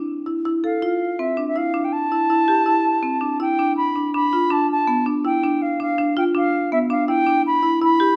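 Hypnotic and pensive, this contemporary chamber piece in 5/4 at 163 BPM, cut from a longer work, sets a woody, mid-forward marimba on medium hard mallets arpeggiating through chords like Dmadd9 and A5 from 0.3 seconds, joined at 0.6 seconds by a pure, straight-toned silver concert flute whose crisp attack carries an expressive melody, all within a moderate recital hall reverb.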